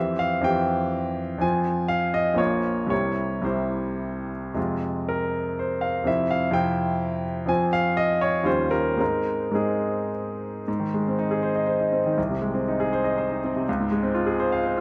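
Passionate and brooding, this romantic character piece for solo piano unfolds in 3/4 with a flexible rubato feel, its pulse drifting between 103 and 131 BPM. A bright grand piano carries everything alone from 0.0 to 14.8 seconds, ranging from Bb1 up to Ab5 with a brilliant, polished tone, long sustain and audible action noise that keeps it intimate and up front. The harmony opens in shadowy minor territory, moving through Fm, Bbm and C before settling into Ab major around 7.5 seconds. At 10.7 seconds a new section begins, turning toward Ab/C and a lush Dbmaj7 near the close. A moderate recital hall reverb lends the instrument space, and the passage is cut from a longer piece.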